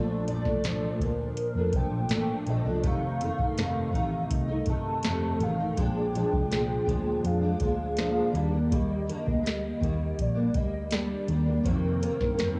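A full-bodied picked steel-string acoustic guitar sits up front in this sunny, laid-back indie and bedroom pop excerpt, its jumbo tone carrying finger squeak, ensemble chorus and a warbly pitch drift through a Bbmaj7, F7, Bb7, Ebmaj7 and F7sus4 progression. A hollow, woody clarinet-like synth lead with vibrato, analog chorus and analog delay carries the melody, while a round, foam-muted electric bass with tube saturation holds the low end. A soft vintage rhythm box enters at 0.3 s with a deep kick, crisp snare and metallic hats, and the whole home cassette recording has a small-room feel and moderate spring reverb.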